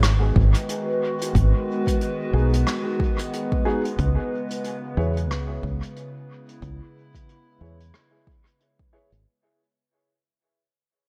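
A small room with light reverb frames this short ambient dub excerpt, which fades out across its full length at 91 BPM in 4/4, with a swung sixteenth feel in C# minor. A warbling, detuned pad sits up front with sustained chords, its lo-fi, nostalgic tone colored by chorus, phaser and its own reverb as the harmony moves from G#m7 to C#m7 at 4.0 seconds. Underneath, a fingered electric bass plays punchy, foam-muted low notes with a touch of tube saturation. A vintage brush kit supplies rolled-off hi-hat and rim click through dub echo, joined from 0.4 seconds by a deep, overdriven electronic kick that sounds re-recorded in a small room. From 2.3 seconds a dark, worn upright piano adds woody, slightly detuned stabs with audible action noise, filtered and trailed by dub echo, keeping the mood spacious and meditative.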